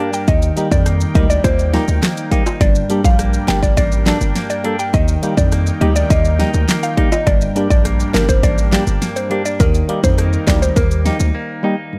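Dancehall at 103 BPM in 4/4, tough and bouncy, circling between Eb and Gm chords inside a dark digital ambience. Up-front layered electronic drums with a punchy kick, fat snare, handclaps, hi-hat and rim clicks sit beside a heavy, fast-attack 808-style bass, while maracas and timbales played with soft hands add close, dry acoustic colour. A hollow, nasal organ stab and twangy clean electric guitar arpeggios fill the middle, a woody, round mallet-like synth pluck with chorus and delay carries the melody, and a smooth, warbling vintage pad with chorus and sidechain pumping hovers in the background before a brief break at 11.3 seconds.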